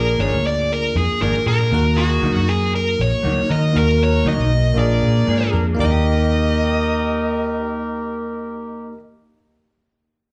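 Soulful and brooding, this short blues fragment moves at 118 BPM in a straight 4/4, with a dark, smooth overdriven lead guitar carrying the melody over bell-like tine electric piano colored by phaser and a round, foam-muted fingered bass sitting up front. A clear, tight horn section holds sustained chords with light vibrato, while a mellow clean guitar adds stabs from the background from 0.2 seconds, its slapback echo and digital delay trailing behind it. Heard as a live club gig through the PA, the band moves from Bb7 to Ebm and back before settling on Eb at 5.8 seconds, with plate reverb and slapback echo coloring both the lead guitar and the electric piano.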